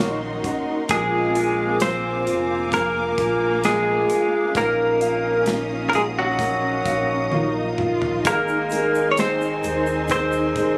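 A bright, twangy clean electric guitar carries the melody up front from the first moment, its direct, compressed tone trailed by digital delay, over a slow, melancholic pop ballad at 65 BPM in a straight 4/4. Beneath it, a clear baby grand piano supplies accompaniment in the background, while a fingerpicked steel-string dreadnought guitar, also touched with digital delay, adds arpeggios. A lush string section holds soft, sul tasto chords high above, while a darker, woody cello section sings a second line underneath. A deep sine sub bass with an octave anchors the low end, and an airy, polished drum kit with a tight kick and medium-tuned snare keeps the heartbroken pulse, playing a fill around 7.3 seconds. A grainy tube shaker joins quietly at 8.3 seconds as the harmony moves from a Gb over Bb chord through Bb7 and Ebmadd9 to Abadd9. Captured on a phone in the room with light reverb and studio ambience, this short passage is cut from a longer piece.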